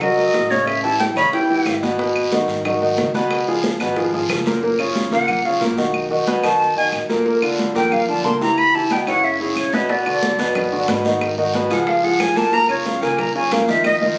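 A breathy, expressive silver flute with plate reverb leads this sophisticated, lively Afro-Cuban jazz excerpt at 182 BPM in F# major, returning at 5.1 seconds for a solo over a clear, polished grand piano with audible action noise, a dark, thumpy pizzicato upright bass, bright high-tuned congas, woody claves, a raspy guiro and tight, very quiet bongos that drop out until 9.9 seconds, all captured with a club-like ambience and a drum fill at 13.8 seconds.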